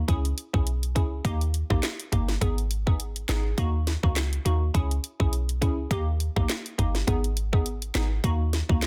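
A short, punchy 808-style bass sits up front in this sultry, tough dancehall cut, its tight sine tone with a noise layer striking fast and decaying into a mellow tail. Alongside it, an electronic island pop drum kit drives the 103 BPM groove in 4/4 with a light sixteenth-note swing, built from a tight kick, sharp snare, handclaps, rim clicks and warm hi-hats, all placed close and forward. Further back, a glassy wavetable pluck supplies the accompaniment: crystalline, nasal and bright, with a noise layer, a filter sweep and a shimmer of chorus on its quick, decaying notes. The harmony cycles through C#m, D#, G#m and D#m across the roughly 9 seconds, a section taken from a longer piece. The mix carries a digital ambience and a dense, heavily limited modern master.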